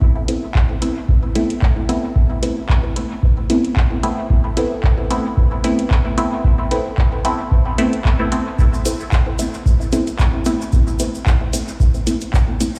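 A deep, dry electronic kick sits up front and anchors this meditative, nocturnal dub techno excerpt with a swung 4/4 pulse from the very start. Just after it, a muted, filtered sawtooth chord stab enters, detuned and plucky with a fast attack and short decay, its mellow tone shaped by chorus, phaser and sidechain pumping before dub echo carries it off into the space. Further back, an analog drum machine supplies handclaps and metallic hi-hats, which are also sent into dub echo. At 8.6 s a grainy, bright egg shaker joins, recorded acoustically in a live room. The whole piece sounds as if it were played on a big sound system in a bare room, with a large studio reverb lending a cavernous, after-hours atmosphere.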